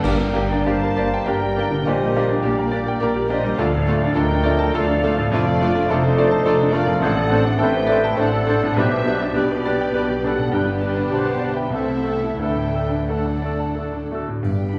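A bright, brilliant baby grand piano sits up front and carries the melody across a lush, lyrical passage from a romantic movement for piano and orchestra in G minor, moving in a rubato 3/4 at roughly 85-108 BPM. Muted violin sections, veiled and con sordino with vibrato, share the tune and weave second lines, joined by a hollow silver flute in the background, a very quiet oboe, and a mellow clarinet that enters at 0.1 seconds. A mellow bassoon and close, muted violas fill in the accompaniment, while dark French horns and smooth trombones hold sustained chords and a dark, distant trumpet section adds soft stabs. Muted cellos and double basses anchor the bass, and the harmony moves from G minor through D minor and a D7 toward G major, A minor and D. Dark clash cymbals, concert bass drum and triangle mark the opening accent with hard-mallet timpani, and return with the timpani at 14.4 seconds. 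A wet scoring-stage reverb wraps the orchestra in a generous, roomy sound in this section cut from a longer piece.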